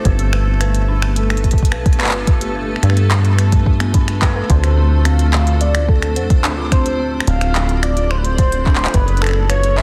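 A straight 4/4 pulse at 108 BPM drives this glitchy, cerebral IDM excerpt, with a soft, up-front electronic kick and a tape-warm glitchy kit of clicky hats, finger snaps and handclaps, its snare softly clipped and its echoes trailing through digital delay, under a rubbery, resonant acid bass that plucks deep and saturated. Eerie, inharmonic FM bell arpeggios sit in the background with chorus and phaser, beside a bubbling stepped-filter texture that pumps with sidechain compression, while a blurred granular cloud pad with 12-bit grit holds chords moving from Gadd9 to Dm7 and on to F#m7 at 8.9 seconds. At 4.5 seconds a velvety synth lead enters with the melody, smooth and sub-octave rich with chorus and vibrato, all inside a dense, heavily limited digital ambience.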